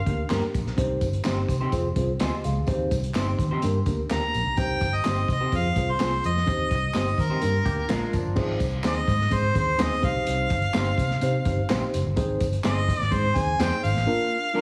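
A brief blast of clear, lightly vibrato harmonica opens this driving, passionate 1960s-style soul excerpt over mellow tine electric piano, round foam-muted bass and a vintage drum kit with a punchy kick and dark cymbals, while dark, slightly broken-up guitar stabs and background handclaps, tambourine and maracas fill in before the up-front harmonica melody returns at 4.1 seconds, a hollow-bodied clean guitar riff slips in at 7.7 seconds, and the whole mix carries a heavily compressed, radio-like sound with light reverb and studio ambience.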